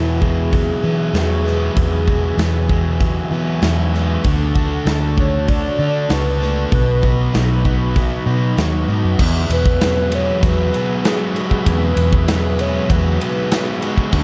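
Dreamy and blissful, this short cut from a longer shoegaze and dream pop rock piece floats a hollow, woody, clarinet-like synth lead with warbling vibrato and analog delay over a smooth background analog pad, a thick fuzz guitar riff alongside a hollow-body overdriven guitar riff washed in reverse reverb, a round, foam-muted fingered bass and a punchy, up-front rock kit with bright cymbals entering at 0.2 seconds, all moving through Eadd9, D and B chords in a dark, warm production.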